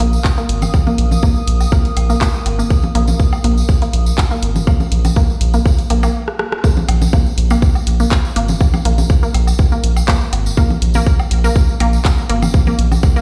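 Played through a big sound system in a bare stone room, this sparse, hypnotic minimal techno excerpt is built on a tight, up-front electronic kick and a round, deep, sidechain-pumped analog bass, with a squelchy, resonant blip pluck riff carrying chorus and dub echo, a garage drum kit of handclaps, hi-hat and rim click, a jingly tambourine, congas and woodblock through delay, and a warbling, nostalgic lo-fi pad with chorus and reverb that ends at 6.2 seconds, just as a stop, drum fill and band accent lead into the drop at 6.6 seconds.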